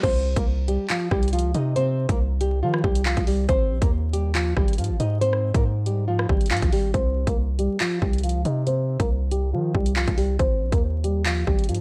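A half-time drill groove in 4/4 drives this dark, cold hip hop passage, cut from a longer piece. Its electronic drum kit has a hard-clipped kick, warm hi-hats, handclaps, rim clicks and a crash cymbal, all roughened by vintage 12-bit sampler grit. Alongside it, a long sustained 808-style bass sits up front with a low, sine-like tone, a fast attack and a mellow decay. The melody comes from a thumb-plucked nylon-string guitar, full-bodied and shadowy in a deep classical style, heard through a low-pass filter and tape echo. The harmony alternates between C5 and Ab chords, and at 6.9 seconds the second section begins with a filter sweep on the guitar that lasts until the close at 11.8 seconds, all set in a digital ambience of vinyl crackle.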